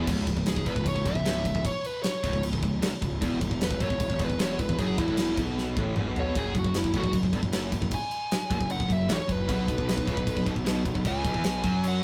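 Heavy metal excerpt, aggressive and relentless, where a dark high-gain lead guitar solos over a bright distorted rhythm riff, a growly fuzz-driven bass and a punchy, up-front rock drum kit with bright cymbals and a fill at 5.6 seconds, all in a rough rehearsal-room sound with light reverb as the chords move through E5, F#sus2 and B5.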